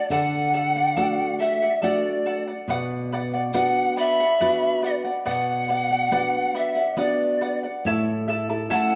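A reverberant recital-hall sound frames this wistful, earthy Andean folk fragment in a gentle triple metre, moving from D to B minor and then A. A mellow, airy wooden pan flute with vibrato and a soft attack carries the melody, while a second, brighter and reedier pan flute, close-miked with a crisp, chiffy attack and a slapback echo, adds a higher line. Underneath, a shimmering fingerpicked charango with doubled strings and an up-front, full-bodied nylon-string guitar, finger squeaks audible, supply the accompaniment.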